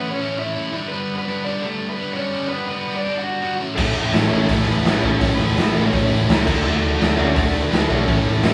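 Punk rock with a rebellious, energetic drive, this short cut from a longer piece opens with a lo-fi, overdriven garage guitar carrying the melody over a sludgy distorted riff guitar sitting in the background, moving through A and G chords. At 3.8 seconds the band crashes in as if playing live in a small room: a crunchy overdriven guitar, a very quiet double-tracked fuzz guitar, a growly, punchy overdriven bass, and an up-front, saturated drum kit with a punchy kick, medium-tuned snare, hi-hat and crash. The kit's gritty, rolled-off top sets it apart before the harmony lands on D at 6.5 seconds.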